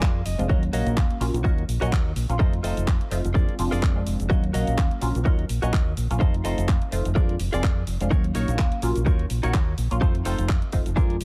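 A brief clean electric guitar fill opens this groovy, nostalgic filtered disco house excerpt, then the compressed, direct-recorded guitar riff rides over a punchy, up-front layered electronic kick, a dark, round fingered electric bass, a mellow sawtooth-and-pulse polysynth comp with chorus, phaser and a fast filter pluck, and a small-room house kit of handclaps, hi-hat and shaker, with the synth, guitar, bass, claps and hats all pumping against the kick in a swung 16th-note groove that cycles through Ebm7, F7 and Bb7/F inside a digital ambience.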